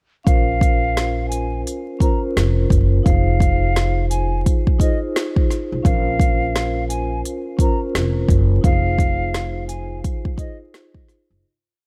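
Moody and reflective, this short, complete boom-bap hip-hop piece sits at 86 BPM in Bb minor, with a swung 16th-note feel and a small room ambience dusted with vinyl crackle. Up front, a deep house drum kit lays down a boom-bap beat with a deep, hard kick, a woody backbeat snare and smooth hats, while a plucked upright bass with steel strings plays a deep looped line with chromatic approach notes. A soft-mallet vibraphone, ringing and metallic with a slow motor vibrato and a cassette-tape tint, pushes rootless chords in a repeated, sample-like loop over a Bbmadd9 to Fm7 progression. On top, a close-miked silver concert flute sings a short, tongued looping melody in a pure, hollow tone with gentle vibrato, also repeated like a sampled phrase. The whole track begins fading out at 8.6 seconds, with the flute dropping away at 10.6 seconds and the vibraphone ringing on last until 11.5 seconds.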